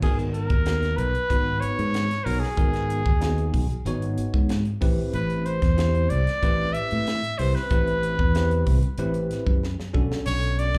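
Nocturnal and slick, this short electric jazz fusion passage moves at 94 BPM in a straight 4/4, cut from a longer piece and heard as a live gig through the venue's PA with light club reverb. A clear, forceful, close-miked trumpet carries the up-front solo melody with slapback and tape echo, over bell-like tine electric piano chords that ring bright and clean with their own slapback echo, while a warm fingered electric bass sits direct and prominent beneath. The airy, polished drum kit pairs dark cymbals with a high-tuned snare and punchy kick. The harmony moves from G#m9 through Am9 and reaches Bm9 at 9.9 s, during a drum fill that runs from 9.6 s.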